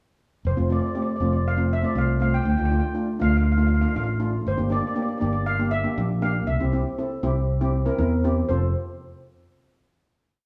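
This short, bouncy and festive calypso opens with a round, up-front fingered electric bass at 0.4 s, playing a syncopated figure with a direct, amped tone. A lead steel pan joins almost at once with a metallic, shimmering free melody, struck with hard rubber sticks and carrying a boxy, small-room colour. Just behind it, a double-seconds pan played with medium rubber sticks adds mellow, dark, smooth triad chords in a rhythmic accompaniment that sits close to the listener. The verse moves through F, Dm, Gm and C, played live together in one room, and a generous large studio reverb lends the whole ensemble a festive glow. The piece resolves onto a final F chord at 8.5 s.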